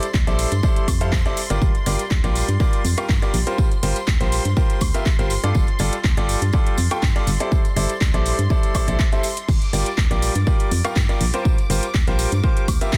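A bright grand piano riff opens this piano house excerpt at 122 BPM in G dorian, its brilliant, intimate tone carrying audible action noise and a tape echo, pumping against the sidechain alongside shimmering string-machine violins that hold soft-attack chords in the background with ensemble chorus. A house drum kit of crash cymbal, handclaps, metallic hi-hats and woodblock plays in a small room from the start, joined at 0.1 seconds by a punchy, tape-warm electronic kick that sits up front, while a close, dry tambourine adds percussion further back. A round, dark FM bass with a fast attack and decaying notes anchors the low end, breathing with the same sidechain pumping as the piano and strings. The harmony moves through Bbmaj9#11, Gm7, C7sus4/G and F69/G over a steady straight 4/4, giving the energetic groove a bittersweet colour. The mix is dense and heavily limited, with a digital ambience around it, and the piece is cut from a longer track at 13.0 seconds.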